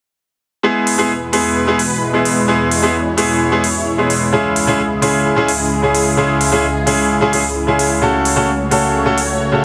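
Powerful and anthemic, this short festival progressive house excerpt opens with a bright, brilliant concert grand piano sitting up front with a delay-tinged, short-sustained accompaniment. It is soon joined at 0.9 seconds by crisp, overdriven electronic hi-hats that sound re-recorded in a large room, and at 1.0 seconds by a lush, thick pad of detuned sawtooth and square waves with chorus and phaser. All of it is framed by light reverb and a heavily compressed, radio-ready sound as the chords move from E to C#m to F#m/C#.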